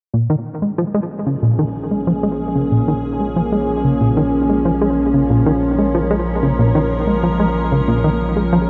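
Drenched in a huge, dark reverb with a long, wet tail, this cut from a longer piece of ambient, sequencer-driven space music feels expansive and cosmic. A punchy, funky analog bass riff sits up front from the start, its sawtooth and square tones ring-modulated and shaped by a filter pluck with a fast attack, colored by cassette tape character and delay, with a filter sweep running through it. Beneath it a round sine sub bass fades in, and from 1.1 seconds an evolving wavetable pad of detuned unison triangle and sine voices morphs through slow-attack sustained chords, thickened with chorus and its own reverb.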